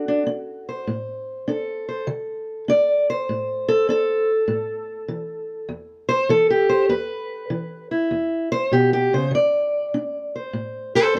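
Acoustic country blues in a soulful, laid-back mood, this short excerpt cut from a longer piece moves at 100 BPM in 4/4 with a swung feel. A lone fingerpicked steel-string parlour guitar sits up front, its tone dark and boxy, ranging from E2 to D5 over chords that shift from D7 through D5, A5 and E5 before settling on a D7 voicing. The dry, close sound of a 1970s-style studio recording carries only a touch of small-room reverb.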